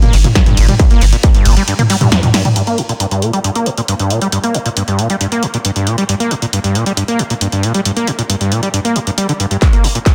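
A dark, relentless excerpt of driving peak-time techno in G minor at 136 BPM opens on a drop with a squelchy, resonant sawtooth acid bass riff, a brief, deep sine sub bass and a punchy analog drum machine of handclaps, hi-hat, ride cymbal, snare and toms, joined at 0.4 seconds by a layered, distorted kick; a drum fill at 2.3 seconds then leads into a long filter sweep on the gritty acid line, and the kick returns for a closing fill at 9.6 seconds, set in light digital ambience within a dense, heavily limited master.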